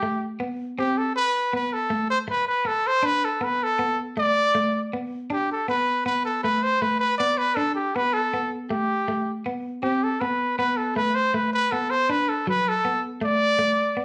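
A jazz-style solo trumpet leads this danceable, joyful highlife passage, its soft attack and vibrato giving the melody a warm voice that sits present and up front. Beneath it, a picked electric guitar, pushed slightly to the edge of break-up, carries the accompaniment in a lower register and also sits forward in the mix. Both parts play throughout the 14 seconds, moving in a straight 12/8 over a harmony that shifts from A7sus2 to Am, lingers on Asus4, returns to Am at 9.8 seconds and lands on D. The two instruments sound like a band playing live together in one room, wrapped in a wet, large studio reverb. The passage is cut from a longer piece.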